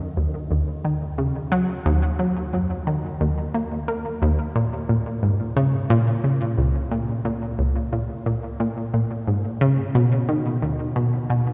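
An analog pluck plays alone from 0.2 to 11.5 seconds, its round, detuned sawtooth tone sitting bright and up front, with a fast attack that decays away, coloured by chorus, vintage 12-bit sampler grit and tape echo. This mysterious, cosmic ambient excerpt moves at 89 BPM in a straight 4/4, in E-flat minor with tuning set to A4 = 436 Hz. A drenching cathedral reverb places the pluck in a vast, echoing space, with long tails hanging in the air.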